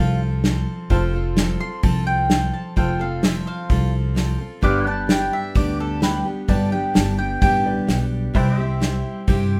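A straight, easygoing 4/4 groove from an up-front acoustic drum kit, played with bundle sticks from 0.4 s, sits over a thumpy, woody pizzicato upright bass in this heartfelt slice of honky-tonk and classic country. A picked mandolin takes the solo melody until 7.9 s, backed by a bright, full-bodied dreadnought acoustic guitar and a worn, slightly detuned upright piano tucked in the background. A clean, twangy pedal steel sustains chords over the F to G to C progression, all in a moderate studio room.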